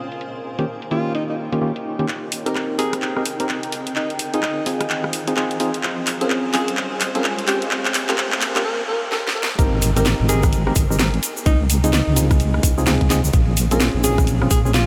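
A granular cloud pad opens this moody, skippy two-step UK garage excerpt at 128 BPM. Its blurred, evolving shimmer sits in the background with lush chorus and sidechain pumping. A garage drum kit of handclaps, hi-hat, rim click and a cracking snare soon arrives up front, swung at 62% on the sixteenths, and a hollow, percussive organ stab and a warm jazz-style alto saxophone join it. The sax stays in the background, with vibrato and subtone through a low-pass filter and diffuse delay. From 2.1 seconds a build-up moves through Abmaj9, Cmadd11 and Bbm9, with filter sweeps on the stab and saxophone, drum fills and an electronic riser, before a short break. At 9.6 seconds the drop brings in a tight, layered electronic kick, a grainy, saturated cabasa and a deep, dark wobble bass made of detuned sawtooth and sine tones, while the chords turn toward Dbmaj9, all inside a dreamy mix soaked in huge reverb.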